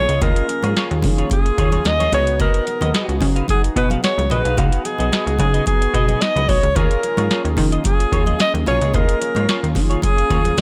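A warm alto saxophone leads this short cut of slick, danceable early-eighties boogie funk, singing a jazz-style solo up front with vibrato and a subtone in the Gb4 to Eb5 range. Beneath it, a plucky analog bass with a punchy, fast-attack filter pluck holds the low end, while a booming drum machine, entering at 0.1 seconds, drives a straight 110 BPM groove in 4/4 with a deep kick, tonal snare and metallic hats. A dark, clean semi-hollow electric guitar plays a fingered riff treated with analog chorus, and a glossy, retro polysynth sits in the background with sustained pulse-wave and sawtooth chords and a filter sweep. Very quiet congas with a thick, damped skin join at 0.2 seconds, adding a touch of live-room air. The harmony in Eb minor moves from Eb9sus4 to Db9sus4 at 2.1 seconds and back at 6.8 seconds, all in a dry, close mix with little reverb.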